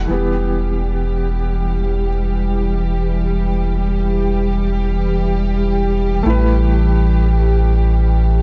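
Trip hop in free time, this cinematic, hypnotic fragment sets a felt-muted upright piano with audible action noise and tape-echoed tremolo over woody, lightly vibrato strings holding sustained chords, a round sine sub bass sitting up front, and a tense, wave-folded drone entering at 1.3 seconds in the background, all within a small, dusky room flecked with vinyl crackle as the harmony moves from Em to Asus2 at 6.3 seconds.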